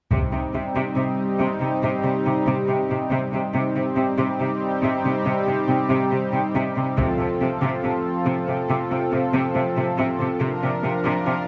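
Brooding and futuristic, this short cut from a longer cinematic score blends orchestral and electronic sound at a slow 70 BPM in 4/4, built as a steady build-up in C dorian. A shimmering, retro pulse-width pad sits up front, its detuned, chorused tone with a soft attack and sub-octave weight sustaining chords from start to finish. Beneath it, a lush bowed cello section holds a focused bass note with vibrato, also placed up front and clear in the mix. A taiko ensemble struck with hard sticks adds a vintage, band-limited thump in two short bursts, first at the opening and again from 7.0 to 8.7 seconds. The harmony moves from Cm to F at 7.0 seconds and on to Bb at 10.4 seconds, all set in the generous reverb of a large scoring stage.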